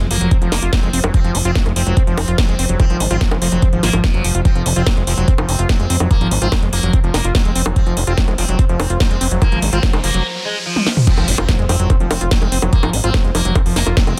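A straight 4/4 psychedelic trance excerpt with an intense, hypnotic pull, built on a knocking, up-front electronic kick that enters at 0.3 seconds and a tape-warm drum kit of cracking snare, metallic hats, bongos, toms and crash, beneath a fat, detuned analog bass, a squelchy, gritty acid bass riff with sidechain pumping and delay, a buzzing plucked sitar melody shimmering through phaser and digital delay, and a very quiet, morphing wavetable pad, while a background riser and a drum fill lead into a drop and impact at 11.1 seconds in a dry, dense, heavily limited mix.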